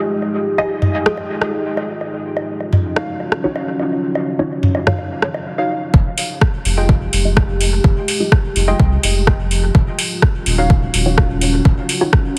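An overdriven electronic kick drum, deep and up front, arrives at 5.9 s alongside a round sine sub bass to anchor this nocturnal, meditative dub techno excerpt at 126 BPM in F phrygian, where a moody, warbling ambient pad holds Fm9 and Ebm9 chords under sidechain pumping, muted sawtooth chord stabs swirl through phaser and dub echo with a filter sweep, a lo-fi dusty pluck riff wavers in chorus, a dry, tape-flavoured vintage rhythm box ticks metallic hats and rim clicks, and analog woodblock and toms echo early on, all inside a heavily compressed, radio-like sound with light reverb.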